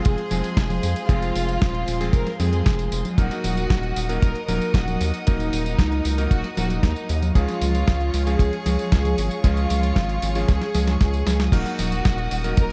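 Nostalgic and melodramatic, this italo disco excerpt moves at 115 BPM in a straight 4/4, centred on Eb dorian over a chord loop of Fm, Ebm and Db. A dark violin section carries the melody with light vibrato and a soft, bowed sul tasto touch, its smooth top lifted by delay and shimmer reverb, while a string section holds dusky sustained chords higher up, also bathed in shimmer. A bright, clangy electric grand piano cuts through with vintage stabs, and a round, deep analog bass sits up front with a mellow, sustained tone and a fast attack. The rhythm comes from a dry, tight acoustic kick placed forward in the mix, paired with a detuned, tape-warm 8-bit drum machine supplying congas, hi-hat, snare, tambourine and crash, and a drum fill arrives from 10.5 to 11.5 seconds. A small room ambience and a layer of vinyl crackle give the whole piece a faded, retro patina.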